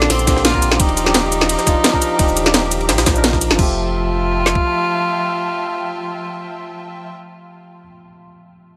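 A jazz-style tenor saxophone with light vibrato and a smooth top leads this uplifting, lush liquid drum and bass excerpt at 172 BPM in F major, carrying the melody up front with delay over a worn, slightly out-of-tune tine electric piano (also with delay), bowed studio strings pumping with sidechain, and a deep sine sub bass with octave. Meanwhile, a drop of layered drums drives the Bbmaj9 to Ebmaj9 changes: an up-front kit with cracking snare, metallic hats, crash and shaker; a gritty, pitched-up, high-pass-filtered sampler-style jungle kit in the background; and an overdriven kit with knocking kick and woody snare entering at 0.3 s. The drums and bass then fall away by 4.6 s, leaving the saxophone, strings and electric piano on Fmaj9 in light digital reverb, with the saxophone and strings fading at 7.1 s and the piano ringing on until 8.8 s.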